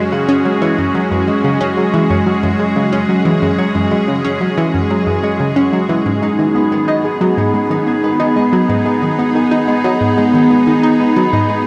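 Set to a steady, straight 4/4 pulse at 91 BPM, this short ambient cut from a longer piece moves in G# minor with a cosmic, hypnotic mood, shifting from F#sus2 to G#m at 6.1 seconds. An evolving wavetable pad holds sustained chords throughout, its detuned sine tones morphing slowly with a gentle attack and long release, thickened by ensemble chorus, built-in reverb and shimmer reverb so it sits bright and up front. A concert harp plays fingerpicked arpeggios whose acoustic, ringing notes pass through analog delay and shimmer reverb. Beneath them, an analog pluck repeats a low riff with a fast attack and quick decay, its round, wave-folded timbre blending sawtooth, pulse and triangle waves with a noise layer and a filter sweep, treated with chorus, analog delay and shimmer reverb. The whole piece floats in a vast, echoing cathedral space with a 4.9-second reverb tail, captured on cassette tape.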